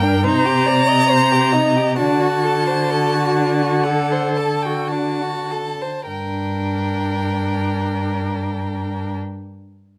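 A close, up-front first violin carries the yearning melody with vibrato, a soft attack and expressive portamento, while a second violin holds a smooth, even line and a viola with sliding vibrato adds accompaniment from further back. Underneath, a single bowed cello gives an up-front bass with its own portamento in this elegiac, rubato string quartet movement in G minor, moving at 49-72 BPM and slowing through its first 6.1 seconds as the harmony passes from C minor to D. At 6.1 seconds the music settles onto G minor, and the dry, detailed sound of this excerpt, cut from a longer piece, keeps every bow stroke intimate.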